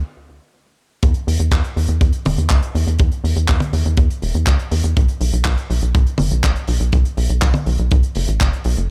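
Nostalgic and danceable, this italo disco passage, cut from a longer piece, opens with a tight sequencer bass playing alone, its dark sawtooth and square-wave tone shaped by ring modulation, a fast-attack filter pluck and tube saturation, sitting up front and driving. At 1.0 seconds a mid-forward acoustic kick drum with a small-room sound enters up front, alongside a tight funk drum kit of handclaps, hi-hat and toms. The mix stays dry, with little reverb, and the kick drops out at 8.5 seconds.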